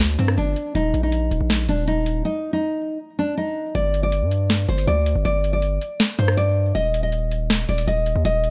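A distorted, saturated 808-style bass with an aggressive noise layer and an overdriven trap drum kit open this dark, eerie hip hop and trap fragment at 160 BPM in a half-time feel. The kit's sharp snare, metallic hats and rim clicks sit up front alongside the heavy, decaying bass. At 0.2 seconds a full-bodied, fingerpicked nylon-string guitar enters with a deep classical melody in G minor over G5 and Eb5 harmony, and a break at 2.2 seconds gives way to a new section at 3.8 seconds, heard in a dry room with little reverb.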